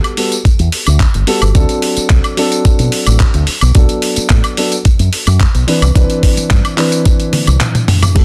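This short nu-disco clip has a dense, heavily limited modern master set in digital ambience, with a sunny, groovy mood over a straight 4/4 feel. A dark, mellow grand piano with a slightly boxy tone carries the accompaniment through a digital delay, moving from Gmaj9 to D7, Bm7 and Cmaj9. A dusty soul sampler-style kit plays from the start, gritty and compressed in a studio room, with crash, handclaps, hi-hat, tambourine, toms and woodblock, plus soft clipping on the snare. At 0.5 seconds a thumpy electronic kick and a fingered electric bass arrive, the bass sounding direct and amped with an envelope filter colouring its low notes. A drum fill at 7.3 seconds closes the passage.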